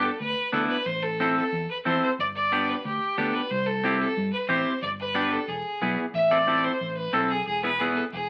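Driving and fiery, this brief cut from a longer cumbia piece races along at 182 BPM, with a biting, intense fiddle carrying the melody up front, a twangy, slightly broken-up electric guitar supplying the accompaniment, and a round, dark fingered electric bass underneath, the whole mix bathed in wet studio reverb and the crackle of a very old 78 rpm record.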